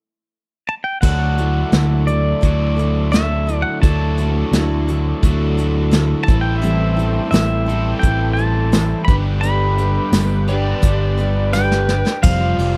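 A clean pedal steel guitar carries the melody from 0.7 seconds, its fingerpicked slide lines compressed and shaped by volume swells, setting a jangly, open-road mood in this folk rock and heartland rock excerpt. Just after, at 1.0 seconds, the full band comes in: a bright, full-bodied jumbo acoustic guitar picks the accompaniment, a crunchy, double-tracked overdriven electric guitar plays a riff, and a round, amped fingered electric bass sits up front. A soft brush drum kit drives the straight 4/4 feel, with a punchy kick and medium-tuned snare captured with a distant, roomy studio sound, plus hi-hat, ride and crash cymbal. A reedy musette accordion adds shimmering sustained chords in the background, while a jingly tambourine joins softly for a stretch. Near the end, an overdriven slide guitar slips in a brief second line from 10.5 seconds, and a drum fill leads into a fresh chord as the piece moves on under a generous studio reverb.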